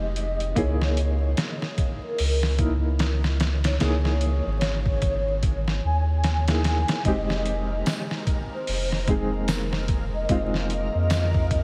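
A slow, swung trip hop groove at 74 BPM in 4/4 sets the hypnotic, cinematic mood. From 0.2 s, a gritty, pitched-down sampler-style kit sits up front with a thumpy kick, a medium-tuned snare and hi-hat, all bathed in studio reverb. Alongside it, a deep, round dub sub bass holds the low end while a dark, woody upright piano carries the accompaniment with tremolo and tape echo. A pure, breathy sine lead sings the melody through ensemble chorus and echo, its soft attack and vibrato drifting over harmony that moves from Fm7 to Dbm6 and back to Fm7. At 7.7 s a reversed, granular texture swells in from the background, and a tambourine joins at 7.9 s to add faint, close percussion. The whole passage, cut from a longer piece, feels dreamy and soaked in huge ambient reverb, with vinyl crackle in the mix.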